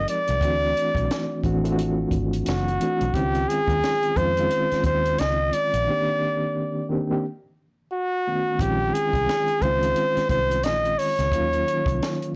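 R&B and neo-soul at 88 BPM with a swung sixteenth feel and an introspective, late-night mood, this excerpt sets an up-front flugelhorn melody with vibrato and slapback echo over a reedy electric piano with fast tremolo, a foam-muted, round electric bass with tube saturation, and a small, dark cocktail drum kit with a high-tuned snare and punchy kick, moving through extended chords from D9 to Ebm9 with a break between 5.9 and 8.6 seconds, all inside a blown-out, overdriven recording with light reverb.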